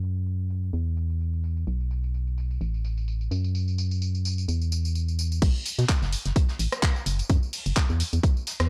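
Uplifting, joyful piano house cut from a longer piece, where a hollow, dark, organ-like FM bass pumps up front beneath a tape-warmed house kit of handclaps, hi-hat, rim click, tambourine and crash through a filter sweep, until the drop at 5.4 seconds brings in a punchy electronic kick and a rolled-off brushed kit of hi-hat and snare set in the background, the whole captured dry and gritty on cassette tape.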